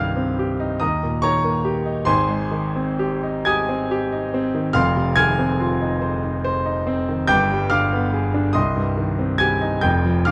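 A romantic classical nocturne for solo piano in C minor, this yearning, wistful excerpt moves at a slow 47 BPM in a rubato 6/8. A clear, natural grand piano sits up front across a range from F1 to Ab6, its harmony passing from Cm through Eb7, Abmaj7, Fm7 and a tense G7b9 before settling back on Cm at 8.6 seconds. Light reverb and a dark, warm production give the recording a shadowed glow.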